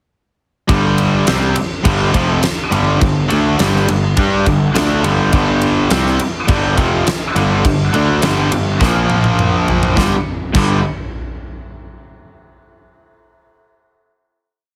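A heavily compressed, radio-ready mix with light reverb frames a powerful, anthemic hard rock piece in which three overdriven and distorted guitars, one dark, lo-fi and double-tracked, grind out a power-chord riff in the background over a growly fuzz bass doubling it in driving eighth notes, while an up-front arena drum kit with a fat snare, punchy kick and bright cymbals drives a big groove, plays a fill from 8.8 seconds, and the band lands on a final chord at 10.0 seconds.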